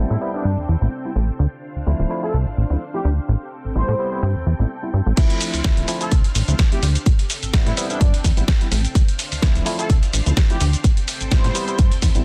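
A punchy, funky plucky analog bass drives this nostalgic, groovy filtered disco house excerpt at 127 BPM in D dorian, with a nasal, brassy analog synth brass melody carrying chorus and digital delay, a clean tine electric piano and a lush string machine ensemble with phaser pumping along under low-pass filtering as the chords move between Am7 and Dm7, before the drop at 5.2 s brings in an up-front, tape-warm electronic kick and a gritty, dusty soul sampler-style kit of fat snare, hi-hat, shaker and crash, all inside a dense, heavily limited mix.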